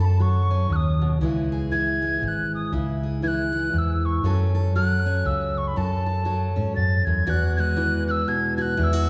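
Bathed in the wet reverb of a recital hall, this short, peaceful and pastoral acoustic folk piece in a swung 3/4 sets an up-front wooden whistle, pure and chiffy with vibrato, singing the melody over a full-bodied, fingerpicked steel-string guitar with fresh strings and audible finger squeak, while a dark, round, punchy hollow-body electric bass anchors the low end, moving from F#m and C#m to a brighter Eadd9 at 7.3 seconds.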